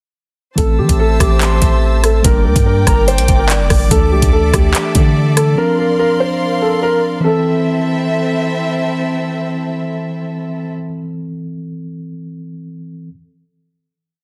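Ominous drill hip hop in a half-time feel, built on a looping melody from a dark, low-passed concert grand piano with tape echo, over held open-voiced chords from a mellow tine electric piano and a soft sul tasto string pad with light vibrato. Up front, an electronic drill kit pairs a knocking kick with metallic skipping hats, fast rolls, handclaps and rim clicks, while long sine 808 sub-bass notes follow the kick with pitch slides, and an airy, hollow flute adds a sparse, tape-echoed counter-melody in the background. Drums and bass drop out around 5.5 seconds, leaving keys and strings to carry a final chord from 7.2 seconds in a dense, heavily limited mix with light reverb.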